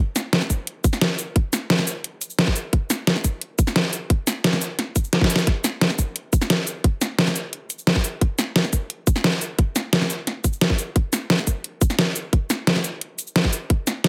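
Drum and bass with a futuristic, mechanical mood, this short excerpt is built entirely from drums: a dubstep-style kit of cabasa, metallic hi-hats and a deep snare, re-recorded in a small room, runs alongside a tight, up-front electronic kick in a straight 4/4 feel. A brief drum fill lands at 5.1 seconds. The layered, produced mix carries light reverb and a heavily compressed, radio-like sound.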